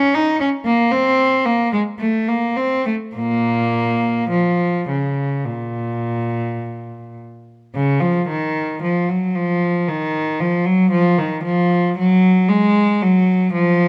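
A solemn, introspective classical movement in baroque suite style for unaccompanied cello in Bb minor, moving at a slow 50-59 BPM in 4/4 with free rubato, in which one player's bowed, period-style cello, rich and reedy with a gut-string tone, sits up front and closely detailed within a moderate recital-hall reverb, ranging from Bb2 to Eb4 and turning to a new section at 7.8 seconds in this brief 13.9-second portion of a longer piece.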